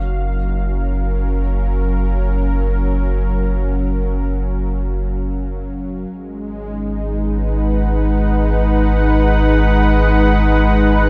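Unmoored from any pulse, this ambient passage drifts in free time for just over 11 seconds, cut from a longer piece and carrying a weightless, warm mood. An analog synth pad of detuned sawtooth voices fades in from the start, its slow attack and chorus giving sustained chords a smooth, warbling, vintage sheen up front in the mix. Beneath it, a deep, round sine sub bass holds its low notes with a fast attack. The harmony rests on F#maj7 before shifting to G#m7 at 6.1 seconds. Light reverb and a small-room ambience frame both parts.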